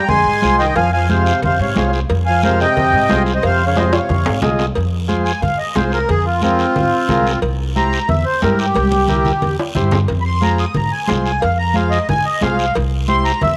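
A reedy, sweet accordion sits up front, close and dry with a light tremolo tuning, carrying the melody of this fiery, danceable cumbia excerpt and taking a solo from 4.8 s to the close. At the start a clear, smooth-topped trombone with vibrato plays a second line beneath it in a pop style, dropping out at 4.4 s. A woody pizzicato upright bass on steel strings holds the low end up front, while a vintage overdriven combo organ with light vibrato fills in the accompaniment. The percussion blends thick-skinned, high-tuned congas, compressed and saturated in the background, with ringing metal-shell cowbell and timbales and a raspy guiro, and drum fills mark the changes, including one at 8.8 s. The harmony moves from F minor to C7 and back, landing on C, all in a straight four-beat feel with light studio reverb.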